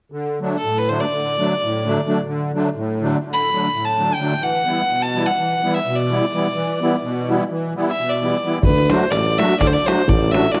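A reedy, shimmering musette accordion opens this exuberant, festive Balkan wedding-band piece in free time and D mixolydian at 0.1 s, joined at 0.6 s by a clear, earthy bowed fiddle carrying the melody up front over chords moving from D to Em and back to D, until a deep acoustic davul and a distant, roomy tuba with vibrato arrive together at 8.6 s, all within a moderate scoring-stage reverb in a passage cut from a longer performance.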